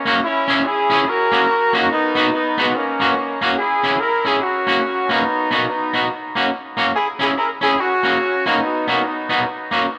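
A swung ska pulse drives this short clip at 143 BPM in 4/4, the eighth notes carrying a 62% swing that gives the music a mischievous, driving bounce. A clear, punchy horn section carries the melody from the very start, its tight, vintage pop-style sound marked by a light vibrato and trailed by dub echo. Beside it, an electric guitar at the edge of break-up plays accompaniment, picked and twangy with a warm, slightly broken-up tone shimmering through harmonic tremolo and its own dub echo. The harmony cycles through C#m, F#, B and F# again and again, with a new section arriving at 3.6 seconds as the progression repeats. Both parts sit up front in a moderate echo chamber reverb, the horns dropping out at 9.5 seconds just before the guitar finishes at 9.9 seconds in this fragment from a longer piece.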